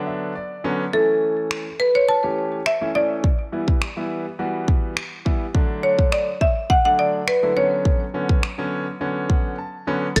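A straight 4/4 dance-pop groove carries this upbeat, summery fragment, opening on a clear, intimate grand piano fill with audible action noise and sidechain pumping before a bright, woody marimba struck with hard mallets takes the melody at 0.9 s, joined at 1.5 s by a layered electronic pop kit of punchy kick, warm hi-hats, finger snaps and crash, while the piano fills again near the close and a round, dark analog bass with sawtooth and ring-modulated colour and its own sidechain pumping arrives only at the very end, all set in a moderate plate reverb.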